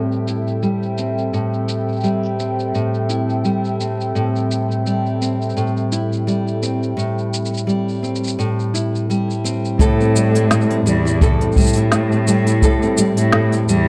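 A lightly swung 16th-note groove at 85 BPM in 4/4 carries this autumnal, wistful folktronica excerpt in A minor, opening on an Am7 chord. Up front, a fingerpicked classical nylon-string guitar with fresh strings plays arpeggios through a low-pass filter and tape echo, with a filter sweep across the opening section. Beneath it, a nostalgic, warbling lo-fi pad of detuned sawtooth and triangle tones holds sustained chords with a slow attack and long release, coloured by chorus, phaser, its own reverb and vintage 12-bit sampler grit, until 9.8 s. An electronic drum kit adds a woody snare, smooth hi-hats and shaker, each softened by low-pass filtering. At 9.8 s a single bowed cello enters as the bass, rich with vibrato, and a boomy, brushed acoustic kick that sounds distant in a small room joins until 12.8 s, all in a fairly dry mix.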